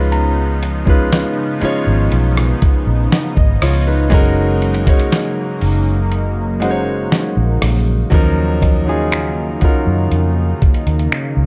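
Contemporary R&B with a longing, moody feel, this short cut from a longer piece rides a straight 4/4 groove in a dark production with little reverb. Up front, a clear concert grand piano carries the accompaniment, intimate and natural, with deep bass and audible action noise. Beneath it, a smooth sawtooth analog pad holds detuned, sustained chords with a soft attack and long release, bright and chorused, and pumped by sidechain. A vintage muted fingered electric bass sounds round, punchy and amped, sitting up front beside a dusty soul sampler-style kit of finger snaps, hi-hat, rim click, a medium-tuned snare and a thumpy kick, all gritty, compressed and tape-warm, re-recorded in a large room. In the background, a worn, slightly out-of-tune tine electric piano adds a clean, direct texture high above, trailed by tape echo, while the kick drops out from 6.1 to 8.1 seconds before the harmony moves to D#m7 at 8.1 seconds.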